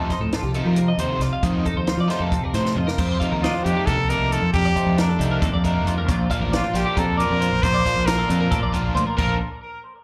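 Math rock and midwest emo in a playful, intricate 7/8 at 271 BPM in Bb major, heard live through a club PA, where two clean, compressed twelve-string electric guitars under lush chorus, one picking warm accompaniment and one twangy, bright arpeggios set back in the mix, play alongside a double-tracked, biting overdriven riff guitar, a growling fingered bass and a compact cocktail kit with a punchy kick and high-tuned snare, until a drum fill at 2.6 seconds ushers in an up-front, close-miked trumpet melody with scooped notes and vibrato from 3.4 seconds as the harmony moves from F13sus4 to Bbmaj9.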